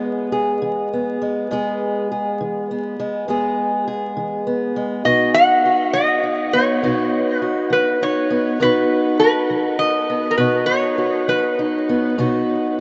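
Awash in a huge, echoing reverb with vinyl crackle and a dulled top end, this laid-back yet rollicking acoustic country blues excerpt in E major rolls along at 68 BPM in 12/8, as an up-front, boxy fingerpicked archtop guitar with audible finger squeak carries the accompaniment from the start over E moving to B, joined at 5.1 seconds by a mellow, nasal, metallic resonator slide guitar played with fingerpicks that sings the melody up front.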